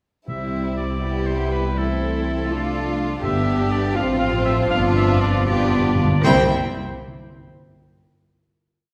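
A cheerful, lively classical-period orchestral miniature in 6/8 opens at 0.3 s with a sul tasto violin section carrying the tune, joined by a bright solo oboe, a soft-edged second violin line, rich violas, dark, distant French horns holding chords, up-front bowed double basses and hard-mallet calf-head timpani, before a clear cello counter-melody enters at 1.0 s and a timpani fill from 4.7 s leads to the final chord at 6.3 s, the ensemble heard from further back in a reverberant scoring stage.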